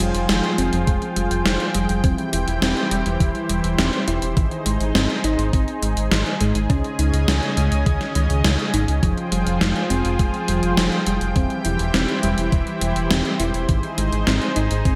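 A thick, detuned unison pad holds sustained chords with chorus and sidechain pumping over a deep, round analog bass, while a mellow, tine-like FM pluck plays chorused, delayed arpeggios in the background, an up-front gated 80s drum machine adds overdriven hi-hat and gated-reverb snare, and a thumpy electronic kick joins at 0.9 seconds, giving this cinematic, nocturnal synthwave excerpt a glossy 1980s-style digital sheen in a lush hall reverb.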